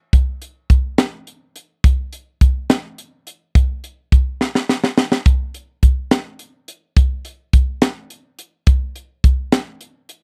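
A crisp fusion drum kit opens this jazz passage, its hi-hat, kick drum and snare drum sitting up front in a dry, close studio sound with a 1970s character. The kit plays throughout, carrying a nocturnal yet driving mood in a straight-feel 6/8 metre. Its acoustic tone is airy and polished, with a high-tuned snare and a punchy kick. A drum fill breaks the pattern from 4.4 to 5.3 seconds before the groove settles back in. Cut from a longer piece, the recording carries little reverb, which keeps every hit immediate and close.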